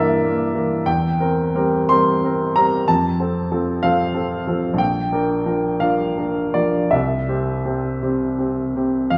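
A warm, smooth grand piano with a vintage tone and long sustain sits up front in this brief romantic character piece, its rubato 6/8 flowing at about 53-64 BPM in dotted quarters across a passionate, hopeful passage from Em7b5/G through C7/E, F and Bb6 to C, spanning Bb1 to C6 and blooming in the 1.3-second reverb of a recital hall.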